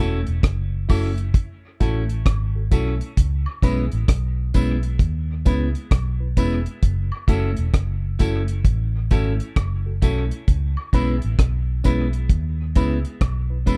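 Dark and close, with little reverb, this cut from a longer roots reggae piece has a laid-back, meditative mood at a slow 66 BPM in 4/4, with a 16th-note swing and a C# minor home. The vintage muted fingered electric bass sits up front, round, punchy and foam-muted through an amp, and the deep reggae drum kit enters at 0.3 s, dry and smooth with a tight kick, hi-hat and rim click under a rolled-off top. A clean, picked electric guitar plays accompaniment with a dark tone, bathed in spring reverb and dub echo. A reedy, worn electric piano, slightly out of tune and heard through its built-in speakers, adds stabs in the middle range. Tambourine and woodblock come in at 0.9 s, sitting in the background with a live-room feel, while the harmony rocks between F#m7 and C#m7.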